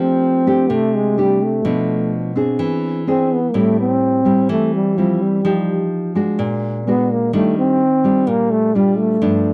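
A straight 4/4 bossa nova groove at 127 BPM sets a sunny, relaxed mood in this short cut from a longer piece. Up front, a breathy trombone carries the melody in a whispered, intimate jazz voice, with scooped notes, soft attacks, vibrato and a smooth top. A thumb-plucked nylon-string guitar supplies classical-toned accompaniment through F69, Bm7b5 and E7b13 to Am7, then Fm9 and Bbaug7 before arriving at Ebmaj9 at 7.3 seconds, all captured in a dry, close 1970s-style studio sound with light reverb.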